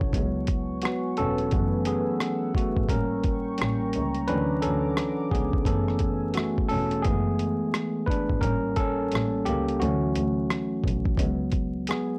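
A bell-like tine electric piano opens this nostalgic, hazy lo-fi hip hop excerpt together with a muffled sampler-style drum kit, a bowed double bass and a dark analog pad, all from 0.0 seconds. The electric piano sits up front as the soloist, bright and clean through a low-pass filter, moving over jazzy chords such as F#m11, A7b9 and Dmaj7 in a swung groove. The drums are compressed and pitched down, with a thumpy kick, hi-hat and rim click, while the bass is played by one distant, earthy player with light vibrato. The deep, moody pad blends detuned sawtooth and triangle tones with a sub octave, a slow attack, chorus and phaser, and it drops out at 7.0 seconds. Light reverb, transformer saturation and vinyl crackle give the dry, gritty recording its faded, dusty character.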